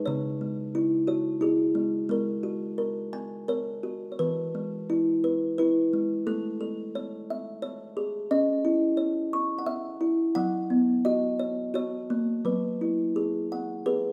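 Bathed in a wet recital-hall reverb, this tender fragment of a gentle children's lullaby in a rubato 3/4 at 87 BPM is carried entirely by a solo kalimba, its woody, hollow, ringing fingertip plucks sitting up front from C#3 to C#6 as soft chords drift from C#m through Amaj7 and F#sus4 to a closing Eadd9 at 12.4 seconds.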